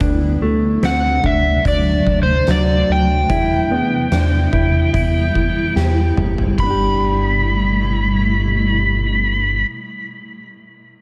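Echo-heavy and lightly reverberant, this dreamy, blissful dream pop excerpt at 73 BPM in G major sets a cloudy, evolving granular pad and a dark, clean fingered electric guitar playing arpeggios with subtle chorus and tape echo over a glossy, retro chorused synth bass and an oversized low-tuned drum kit with a fat snare and punchy kick in a stone room, whose fill at 5.8 s leads to its stop at 6.8 s, while an up-front, overdriven slide guitar with tape echo carries the melody from 0.9 s over chords moving from D7 to Cmaj7 to G69.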